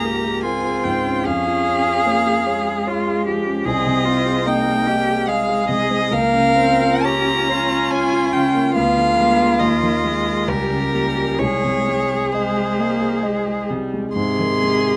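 Set in light reverb, this close, natural-sounding recording is a slow romantic movement for piano quartet, cut from a longer piece, with a tender, serene mood. It moves in 3/4 at roughly 61-75 BPM with a rubato feel in Ab major, tuned to A4 = 437 Hz. A single clear violin carries the melody up front, its smooth, even bowed line shaded with vibrato and reaching up to C6. Beneath it a rich, focused cello sings a second line with a smooth top, while a warm viola fills in the accompaniment with soft attacks, expressive portamento and vibrato. The intimate concert grand, also up front, anchors the harmony with deep bass and audible action noise, passing through shadings such as Bbm/Db and Ddim7 before the passage settles on Ab at 14.2 seconds.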